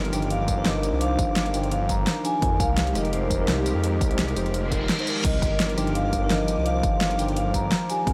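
A menacing, saturated detuned saw bass sits up front in this dreamy, melancholic liquid drum and bass fragment at 170 BPM in C minor, moving from Cm11 to Fm11 and back to Cm11. A mellow tine electric piano with analog chorus and tape echo, a glassy FM pad with ensemble chorus and sidechain pumping, and a metallic, ringing vibraphone melody with tape echo float over a pop drum kit with a fat snare and bright hats, joined by a punchy electronic kick from 0.5 s. A reverse cymbal sweeps in at 4.7 s, and the whole mix is soaked in huge ambient reverb.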